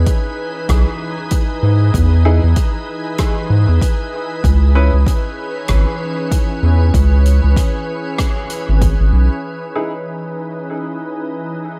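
A soft, organ-like pad opens this deep, hazy ambient dub fragment, holding sustained chords from Emaj7 to C#m7 with a slow attack, ensemble chorus and built-in reverb that give it a pure yet bright glow. Beneath it, a round analog bass sits up front with a dark, sine-like weight, while a punchy, layered electronic kick drives the 96 BPM pulse in 4/4 with a loose 16th-note swing. A soft-mallet drum kit adds hi-hat and rim click at a low level, its hats, snare and room filtered and soaked in dub echo for a natural, hall-like feel. From 2.3 seconds a clear, woody upright piano, slightly detuned and worn, drops stabs into the background with its own dub echo. The rhythm section falls away around 9 seconds, and the pad carries the return to Emaj7 inside a small room ambience, joined by a brief piano stab near 9.8 seconds, until the cut at 11.8 seconds.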